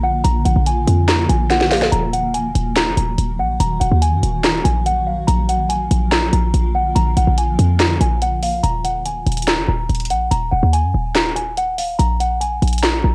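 A small, bell-like celesta with soft felt hammers plays a delicate, dark melody through cassette tape and tape echo over a blurred granular cloud pad until 8.6 s, while a punchy, tight 808-style bass sits up front and an electronic trap kit with a sharp snare, bright hats and handclaps enters at 0.2 s, fills briefly at 1.5 s and drives this melancholic yet hard-hitting half-time trap excerpt at 143 BPM in Eb harmonic minor, moving between Bb and Ebm in a dry home cassette recording.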